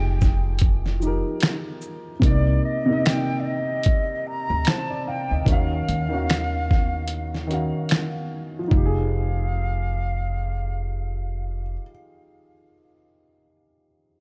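Lo-fi hip hop with a hazy, nostalgic mood and a swung feel over minor ninth chords, where a distant, airy metal flute with vibrato carries the melody through tape echo above a dark, intimate upright piano with audible action noise, a woody pizzicato upright bass on gut strings, and a gritty, overdriven sampler-style kit of thumpy kick, fat snare, hi-hat, shaker and finger snaps that stops at 8.9 seconds, before the piano plays alone from 11.8 seconds to close this mellow, lightly reverberant fragment of a longer piece.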